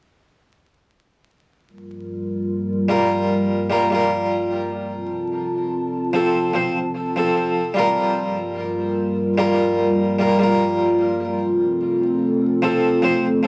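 Vinyl crackle and the sound of a cassette home recording, set in a short, wet studio reverb, frame this smoky, cinematic trip hop fragment in G minor at 74 BPM, where a deep, detuned analog pad with ring modulation, chorus and 12-bit sampler grit holds slow-attack chords moving between Gm7 and F from 1.7 seconds, joined at 2.9 seconds by a round, plucked harpsichord accompaniment carrying tremolo and tape echo.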